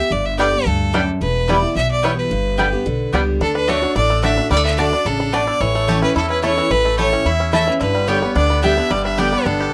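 A clear, biting fiddle leads this lively, rustic bluegrass excerpt at 218 BPM in G lydian, bowed by a single player with light vibrato and set up front. Beneath it, a bright, full-bodied picked dreadnought guitar and a dark, thumpy pizzicato upright bass on gut strings carry the straight 4/4 feel, while a twangy, percussive fingerpicked banjo adds arpeggios and a woody, double-strung mandolin adds stabs, both entering at 0.4 seconds. Close, detailed microphones and little reverb give a dry, present sound as the chords move through G, Em, D and A.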